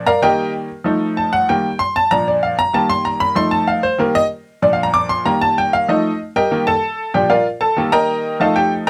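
Joyful and sunny, this short Latin clip at 190 BPM features a solo upright piano, brilliant and woody with a slightly detuned character, audible action noise and short sustain, sitting up front in an intimate booth as it cycles through Eb, F7 and Bb chords for its full 8.9 seconds, cut from a longer piece.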